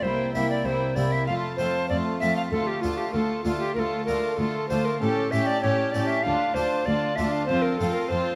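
Set in a reverberant recital hall, this brief, stormy passage from a baroque-style concerto movement puts an airy, expressive alto recorder up front with a chiffed, crisp attack, over a soft high violin line in the background, a gut-string second violin line, a nasal viola section, a close, brilliant French-style harpsichord and a dark cello section on the bass, all moving from C7 through F, Dm and A7 back to Dm and F.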